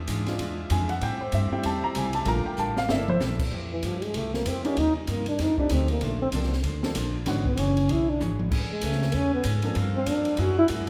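A mellow saxophone section holds soft-attack chords over woody pizzicato upright bass as this brassy, swinging big band excerpt opens, joined by an intimate baby grand piano taking a brief solo with audible action noise, a clean hollow-body electric guitar in the background and an open drum kit with dark cymbals, a high-tuned snare and a boomy kick adding fills, before a veiled trombone with a bucket mute steps up front with vibrato and scooped notes from 3.7 seconds, the saxophones returning at 8.5 seconds, heard from further back in a moderate recital hall reverb.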